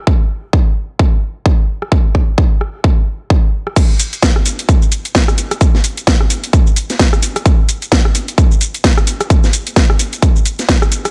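Swaggering and aggressive, this house excerpt drives at 130 BPM in 4/4 with a 58% swing on the sixteenths. An electronic kick drum opens at 0.1 seconds, punchy and tape-warm, layered and up front, its weight carried by the resonance of a large room. At 1.8 seconds a garage drum kit joins, also electronic and layered, bringing a cracking snare, bright hi-hats, rim clicks, shaker and crash cymbal. The drop arrives at 3.8 seconds and runs to the end, with both drum parts pressing forward through a digital ambience. The result is lean, percussive and insistent, built entirely around the drive of its beats.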